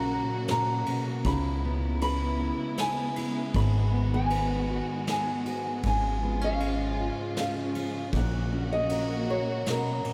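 This acoustic folk-pop ballad moves at a slow 78 BPM in 3/4, its melancholic, reflective mood set in a short cut from a longer piece. A small-bodied nylon-string guitar carries the fingerpicked melody through a tape echo, while a full-bodied dreadnought steel-string guitar, also fingerpicked, fills in the accompaniment with an analog chorus shimmer. Beneath them, a close chamber string section holds bowed chords with vibrato, soft attacks and expressive portamento. A woody, pizzicato upright bass sits up front until 9.4 seconds, and a soft brush kit with a punchy kick, medium-tuned snare and ride enters at 0.5 seconds in a natural small-room sound. The harmony drifts from F#/A# through C#m7 and G#m7 to C#/G# before returning to F#/A#, all bathed in a dreamy cathedral reverb with a long 6.4-second tail.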